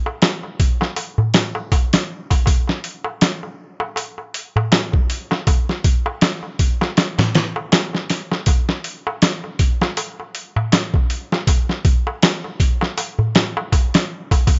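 A dry, dark-toned mix with little air up top frames this melancholic, brooding trip hop excerpt at 80 BPM in 4/4 with a 16th-note swing, where a gritty, pitched-down, sampler-style boom bap kit of thumpy kick, medium-tuned snare and hi-hat sits up front with tape-warm compression and studio reverb from 0.2 seconds, while a crisp, close metal-shell darbuka played with soft hands sits quieter beneath it from 0.1 seconds.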